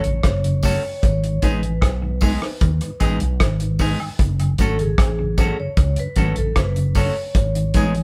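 Roots reggae at 76 BPM in 4/4 with a straight, laid-back and meditative feel, this short section, cut from a longer piece, sits in F# dorian and moves between F#m and G#m. A damped 70s drum kit sits up front with hi-hat, a tight kick and rim click, its sound dry and dark with a rolled-off top, while a fretless electric bass, round and amped, holds the low end just as prominently. A clean electric guitar plays picked accompaniment with a dark tone, and a mellow tonewheel organ lies in the background, soft and flute-like, colored by chorus vibrato, a slow rotary speaker and tape echo. The melody comes from a vibraphone played with medium mallets, metallic and ringing with a slow motor vibrato. Tambourine and woodblock enter at 0.6 seconds, faint in the background with a small-room tape-echoed sound, and the whole band plays live in one room with light reverb.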